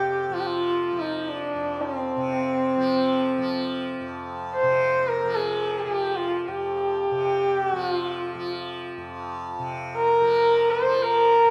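Solemn and longing, this short fragment of Hindustani classical music unfolds in free time, with a single bowed sarangi carrying the melody from start to finish across 11.5 seconds. The sarangi sits up front, its dark, woody tone moving between C4 and C5 with light vibrato and gliding portamento, while its sympathetic strings add resonance. Underneath, a softly plucked tanpura holds a drone between F2 and F3, much quieter than the sarangi, its bright, buzzing strings giving off a shimmering halo. A moderate concert hall reverb lends the pair a spacious, reflective air.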